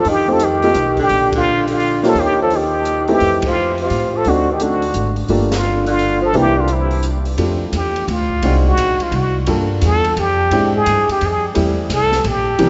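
A plunger-muted trumpet leads this playful jazz waltz, its clear, wah-wah tone carrying the melody up front with a light vibrato. Beneath it, a mellow tenor saxophone with a soft attack adds a distant second line until 7.0 seconds, and from 7.4 seconds the trumpet takes a solo. An intimate baby grand piano comps with short sustain and audible action noise, while a woody pizzicato upright bass sits close in the mix. The drum kit stays low, with a high-tuned snare, boomy kick, hi-hat and ride cymbal, and the band punches out a few accents in the opening section. Swung eighths give the small-group swing and bop feel an easy lilt, and the lush harmony runs through ninth and altered chords under a long cathedral reverb that softens the top end, lending the whole piece a warm glow in this brief cut from a longer performance.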